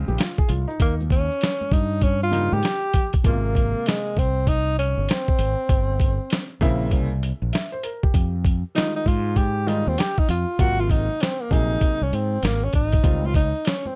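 Jazz-hop with a cool, relaxed hip hop feel, this excerpt moves at 98 BPM in 4/4 with a swung sixteenth-note lilt in Ab major. A breathy tenor saxophone carries the solo melody from 0.8 seconds, its mellow subtone, vibrato and scooped notes sitting up front with a touch of plate reverb. Beneath it, a woody, vintage upright piano voices smooth jazz chords such as a rootless Bbm11, Ab69, C7b9 and Fm9, also bathed in plate reverb, while a fretless electric bass holds the low end with a direct, amped tone. The boom bap sampler-style kit is gritty, compressed and pitched down, with a thumpy kick, a medium-tuned snare and hi-hat pushed forward in the mix. Ringing congas and maracas played with soft hands sit in the background until 3.2 seconds and return at 13.0 seconds, rounding out a dark, warm production.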